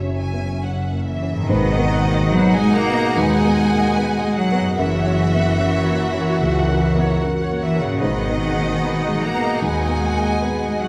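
The bowed cello section anchors the bass of this sorrowful, longing cinematic orchestral score with smooth vibrato, joined by a lush, expressive violin line over a distant violin melody, an even viola section, a dark felt-muted upright piano, a ringing thumb-plucked harp, a softly vibrating double bass section and a brief mellow clarinet that drops out by 0.6 s, while a French horn section adds sustained chords from 1.5 s, all in a rubato 4/4 and held in the moderate reverb of a scoring stage.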